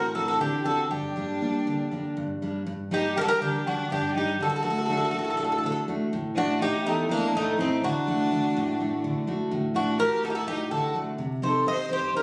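A metallic, double-strung Greek bouzouki carries the up-front melody with plate reverb, shadowed by an intense, airy-bowed violin line with vibrato and a full-bodied jumbo steel-string guitar whose accompaniment catches finger squeaks, in this brooding, bittersweet Greek folk band cut from a longer piece: a 7/8 groove at 245 BPM in eighths that speeds up throughout, set in G harmonic minor and moving through D7, Gm, D, A and Cm, heard through a phone recording in a lively club room.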